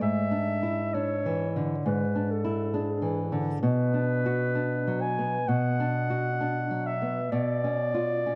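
Romantic duo for clarinet and classical guitar: this tender passage, cut from a longer piece, moves at a rubato 66 BPM in 4/4, with a soft-attacked, classical-style clarinet carrying the melody between G#4 and G#5 over a small, up-front, thumb-plucked nylon-string guitar accompaniment whose harmony shifts from E7/G# to Bm at 3.6 seconds and C#7/B at 7.3 seconds, the recording sitting in a dark, warm production with moderate spring reverb.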